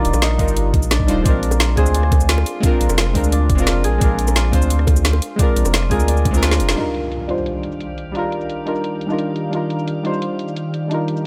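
Liquid drum and bass at 174 BPM in Eb major, warm and lush, cut from a longer piece. The opening drop pairs a deep, mellow chord stab, soft and evolving with chorus and delay, against fingerpicked Celtic harp arpeggios that ring through their own delay, while a thick, saturated sub bass sits up front moving from Ebmaj9 to Bb7. The drums combine a layered electronic kit, with a woody snare, bright hats, cabasa and rim clicks under overdrive and filtering, a gritty, thumpy, pitched-up kick, and tight, high-tuned bongos tucked into the background. The kick and bongos fall away at 6.3 seconds, then a drum fill at 6.5 seconds and a band accent lead into an electronic impact at 6.8 seconds, where the sub bass drops out and the chords return to Ebmaj9. From 7.2 seconds a glassy, ethereal FM pad swells in with ensemble chorus and sidechain pumping, carrying the stab and kit to the end under a light reverb.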